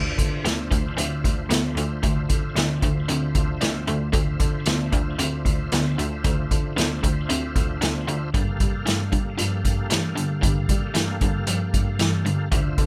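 Up front, a punchy vintage drum kit drives this heavy, gritty blues rock and southern rock excerpt at 114 BPM in D minor, its hi-hat, kick and medium-tuned snare ringing in a small, pumping room with a rolled-off top, entering at 0.2 seconds. A bright, double-tracked semi-hollow guitar picks an overdriven riff over a clear, smooth bowed cello bass line with light vibrato, while a thick tonewheel organ holds sustained chords further back through slow rotary speaker and chorus vibrato, its key click audible. The harmony moves from Dm9 to Gm9 at 8.3 seconds, with little reverb keeping the sound close and dry.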